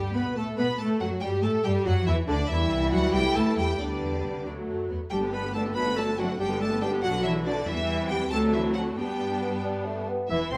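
This graceful, lively classical-period movement for symphony orchestra opens with the lower strings, a chamber violin section, a clarinet and French horns sounding together at 93 BPM in a straight 6/8, in G major and tuned slightly below standard pitch. From 0.1 s a rich, smooth violin section carries the melody with even vibrato from a distance, while the more intense chamber violin section and a soft-attacked, roomy clarinet trace second lines beneath it. Focused, lush violas supply accompaniment in the background, the horns hold sustained chords, and bowed cellos and a smooth-topped symphonic double bass section anchor the bass. A close, up-front bassoon joins with accompaniment at 9.6 s, and a present oboe adds a brief second line at 10.3 s, just as the passage is cut from the longer piece. The harmony moves through changes with colored chords such as Gsus2, Dadd9 and D7/G, settling back on G, and the whole ensemble sits in a damp stone-room reverb.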